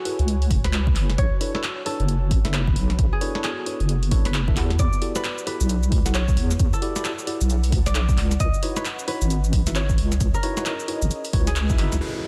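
Soulful and late-night, this two-step UK garage excerpt moves at 133 BPM with a swung 16th-note feel, as a ringing, fingerpicked concert harp carries the melody through dub echo over an ethereal, airy pad that sits in the background with chorus, phaser and sidechain pumping. A worn, slightly out-of-tune tine electric piano adds lightly overdriven stabs through echo and a low-pass filter, while a punchy analog drum machine supplies filtered snare, hi-hat, handclaps, cabasa and crash cymbal alongside a dry electronic kick. A deep, saturated wobble bass sits up front beneath the minor-eleventh chords, and an electronic downlifter arrives at 12.0 s in a dense, heavily limited modern mix.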